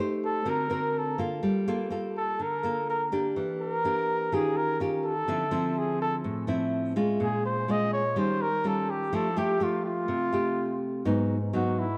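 A lush plate reverb with a 2.8-second tail surrounds this recording, giving it the sense of a room heard from some distance. It is a relaxed, sunny bossa nova in 4/4 at 125 BPM with a straight feel, cut from a longer piece. A full-bodied nylon-string guitar, fingerpicked in a classical manner, carries the accompaniment up front from the very start, with finger squeaks audible. From 0.2 seconds a warm flugelhorn takes the solo melody in a jazz style, punchy and close-miked, with a light vibrato. The harmony moves through rich chords such as D7b13, Gm9, Em7b5, Fmaj9 and Abm7, keeping the mood easy and bright.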